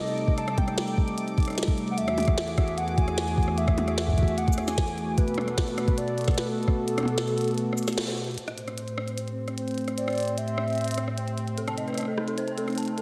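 IDM with a melancholic, glitchy mood, cut from a longer piece and set in a dreamy mix soaked in lush hall reverb. A smooth, detuned sawtooth pad holds sustained chords up front throughout, while a warbling, nostalgic lead carries the melody with chorus, tremolo, vibrato and analog delay until 11.4 seconds. Beneath them, a glitchy drum kit of clicky hats, rim clicks, shaker, tiny snare and toms crackles with overdrive, joined by a soft, overdriven electronic kick that sits up front until it drops out at 6.8 seconds. A bubbling, resonant texture of random filter steps murmurs in the background, and after a band accent at 8.0 seconds the pad takes on a filter sweep. In the closing moments an eerie, inharmonic FM bell with chorus and phaser arrives with dark, decaying arpeggios.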